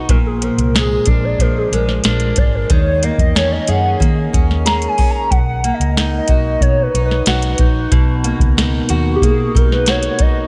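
A straight 4/4 pulse at 92 BPM comes from a soft vintage rhythm box, its deep kick, crisp snare and metallic hi-hats sitting dry and up front with a tape-tinged analog character. This short indie pop and bedroom pop fragment in B major, cut from a longer piece, feels nostalgic and sunny. A fingerpicked steel-string acoustic guitar carries the accompaniment with an auditorium-like warmth, treated with subtle chorus and a vibrato effect. Beneath it, a vintage muted fingered electric bass adds a dark, round, foam-muted tone with an amped edge. Across the whole 10.5 seconds, a warbling synth lead takes a solo melody, blending detuned square and sawtooth waves with a fast attack, sustained notes, portamento and vibrato, all coloured by analog chorus and tape echo. The harmony moves from A#7 to D#7sus4 at 2.7 seconds and settles on Bmaj7 at 5.3 seconds, the whole mix wrapped in light reverb.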